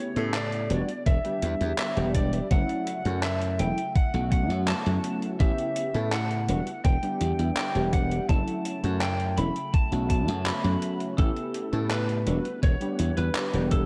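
A straight, unhurried 4/4 pulse is set by a gated 80s digital drum machine of handclaps and hi-hat, joined at 1.1 seconds by a thumpy, up-front electronic kick, while a glassy, punchy slap bass anchors this melancholic, hazy vaporwave fragment cut from a longer piece. Warbly lo-fi synth keys with detuned pulse and sawtooth tones and analog chorus supply decaying accompaniment, and a mellow, tape-like pad sits in the background with slow-attack sustained chords over a drifting progression of ninth, minor seventh and suspended harmonies. Above it all, a lightly driven, twangy lead guitar carries the picked melody through tape echo, with light reverb softening the whole mix.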